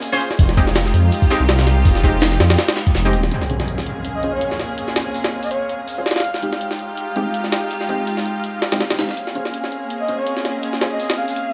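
Gritty, compressed drums and a thick, menacing bass open this frenetic, dark drum and bass excerpt, a jungle cut in Bb minor at 164 BPM with a 16th-note swing. The jungle sampler-style kit sits up front throughout, its pitched-up breaks carrying a thumpy kick and high-tuned snare, while a saturated, rolled-off breakbeat kit adds acoustic room texture in the background until 3.2 seconds. A detuned saw bass, beating and sustained, drives the opening drop alongside a dark, bowed string section playing soft sul tasto chords with light vibrato, and a bold, punchy orchestra-hit-like stab with dub echo jabs from behind. At 3.3 seconds an electronic impact marks the shift into a new section over Bbm9, after which an airy, wind-like noise texture drifts in the background with its own reverb. A breathy, flute-like synth lead with chorus, tremolo and dub echo floats above from 4.1 seconds and returns near the close, as the harmony alternates between Fm9 and Bbm9.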